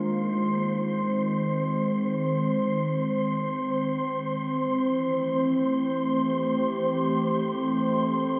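A warbly, tape-like pad stands out most, holding sustained chords from Eb3 up to C5 with a detuned, nostalgic lo-fi glow, softened by chorus and its own reverb. Above it, a wind-like tuned noise texture sits between C5 and C6, airy and breathy yet dark, with slow attacks and long releases. This ambient excerpt moves in free time, melancholic and serene, shifting from Fm7 to Am7 at 4.4 seconds. A filter sweep runs across the pad for the full 8.4 seconds, while both parts play together from start to finish. The sound is bathed in a lush hall reverb and carries a cassette-tape dullness that rounds off the top end.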